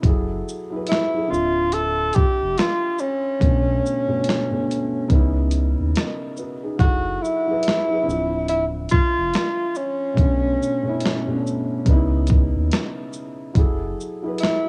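Lo-fi hip hop at a slow 71 BPM with a swung 16th feel in F# minor, nostalgic and hazy, cut from a longer piece. A gritty, compressed boom bap sampler-style kit sits up front with a thumpy kick, medium-tuned snare, hi-hat, shaker and finger snaps, while a deep sine sub bass with octave, thickened by tube saturation, holds the low end until 13.9 seconds beneath a soft, felt-muted upright piano whose audible action noise and cassette-tape filtering lend a vintage, intimate glow to the minor ninth chords. From 0.9 seconds a breathy tenor saxophone carries the melody up front in a jazz style, using subtone, scooped notes and light vibrato, its tone dulled by a low-pass filter and trailed by analog delay over a small-room, home-cassette ambience.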